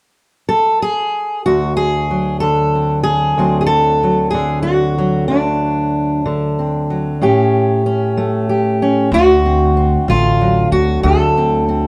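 A lilting triple-pulse feel in compound time, played straight, carries this brief, laid-back and soulful slice of acoustic country blues, lifted from a longer piece. A fingerpicked steel-string acoustic guitar enters at 0.5 seconds and carries the melody, sitting up front with an auditorium-sized body and audible finger squeak. After a short unaccompanied opening, the guitar settles onto a D7 chord, moves to A7, then returns to D7. At 9.1 seconds a pizzicato upright bass joins beneath it with a woody, steel-strung tone, staying a little lower in the mix. The pair sound like musicians playing live in one room, wrapped in a noticeably wet studio reverb.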